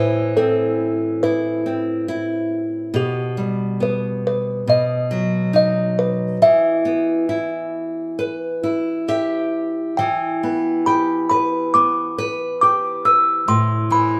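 A delicate, tinkling music box with a vintage, band-limited tone carries the melody of this dreamy, gentle lullaby in E minor, drifting at a rubato 69 BPM in 4/4. Beneath it, a bright, fingerpicked nylon-string guitar with fresh strings sits small and up front, moving through Amadd9, G/B, B and Em and adding a short fill at 8.6 seconds before the opening phrase returns at 10.0 seconds. Both play live together in a stone room whose moderate reverb gives this short passage, cut from a longer piece, a soft halo.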